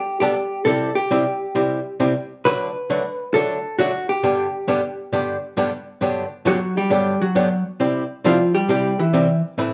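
Cheerful and playful, this country excerpt in G major swings along at 135 BPM as a dark, clean vintage hollow-body jazz guitar carries the picked melody up front over a compressed, miked and amplified archtop guitar's accompaniment, the two playing live together in one room with wet studio reverb before the hollow-body takes a solo from 6.0 seconds over Gmaj7 and C chords.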